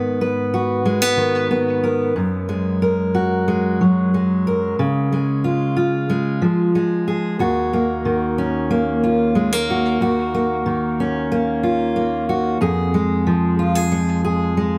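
A straight 4/4 pulse at 92 BPM carries this short folk passage in Eb minor, cut from a longer piece, with a bittersweet, stirring mood. A fingerpicked steel-string dreadnought acoustic guitar plays solo from start to finish, sitting up front with a bright, full-bodied tone and the crisp ring of fresh strings, down to an audible finger squeak. Its range stretches from Eb2 up to Cb5, and the harmony moves through Abm7, Gbadd9 and Db before a second section begins at 7.4 seconds on Ebm7 and reaches Fm at 12.6 seconds. Dub echo on the guitar gives the mix an echo-heavy character, while a moderate spring reverb of about 1.3 seconds adds a springy, lingering halo around the notes.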